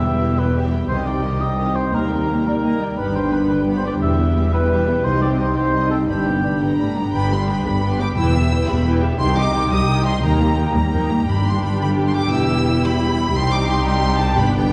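Cinematic orchestral music in a straight 6/8, soaring and triumphant, cut from a longer piece. A lush violin section carries the melody high with smooth, even vibrato, while a second violin section adds a darker, woody line close beneath it. A mellow, distant cor anglais plays its own solo line until 6.6 s, and a mellow French horn section holds sustained chords in the background until 7.0 s. Violas fill in a warm accompaniment, a ringing concert harp plays fingerpicked arpeggios, and a focused cello section joins a clear, lightly vibrating double bass section to anchor the bass. The harmony circles through E minor, C minor, E-flat and G across two matching phrases, and a generous scoring-stage reverb places the orchestra further back in the room.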